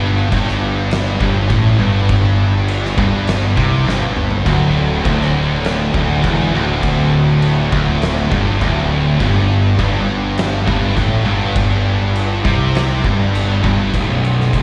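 A straight 4/4 pulse drives this sludgy, ominous slice of stoner and doom metal, cut from a longer live performance. A growly, up-front fingered electric bass with overdriven fuzz sits at the bottom of the sound. Above it, a bright, double-tracked high-gain guitar carries the riff through to 13.9 seconds, while two dark, picked fuzz guitars sit further back: one is very quiet and the other is tucked into the background. An oversized, low-tuned acoustic drum kit comes in at 0.3 seconds with a punchy kick, fat snare, toms and crash cymbal, heard as saturated and gritty with a rolled-off top, and it plays a fill between 3.9 and 4.5 seconds. The harmony moves from Gsus24 to Dsus24 and back, landing on Bm at the end, and the whole band comes through a venue PA into small room ambience and recital hall reverb.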